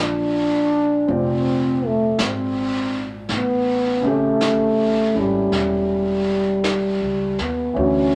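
A breathy, mellow trombone carries the melody up front from the start, its scooped notes sitting over a woody, open upright piano and a thumpy pizzicato upright bass on gut strings, in a late-night, intimate jazz ballad at a slow 54 BPM with a swung feel. At 1.1 s a vintage brush kit joins, its snare and hi-hat played with brushes in a small-room sound with a rolled-off top. The harmony moves from Bbmaj7 to A7 at 3.3 s, all set in a moderate club reverb in this short passage cut from a longer piece.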